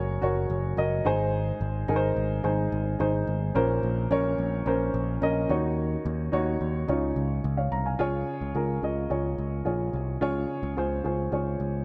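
A warm upright piano with a woody, up-front tone and a punchy, amped picked electric bass play together from the start of this short pop excerpt in Db major, moving at 108 BPM in a straight 4/4. The harmony passes through Gb, Ab, Bbmadd9, Ebm7 and Dbadd9 before settling on Db at 8.0 seconds, where a new section begins and runs to 11.8 seconds. Light reverb and a small-room ambience frame the dark production, giving the piece a warm, anthemic mood.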